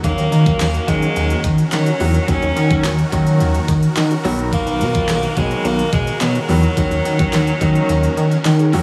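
Opening at once with a raspy, distant alto saxophone melody over polished grand piano, lush detuned supersaw chords in the background, a glossy chorused synth bass up front and a pop drum kit with a knocking kick, fat snare, crisp hats and handclaps, plus a very quiet jingly tambourine, this driving, confident dance-pop excerpt in Eb minor at 107 BPM moves from Ebm7 to Bmaj7 and back, with sidechain pumping on the bass, piano and supersaw chords, tape echo on the saxophone, piano and drums, and the kick dropping out at 7.9 seconds.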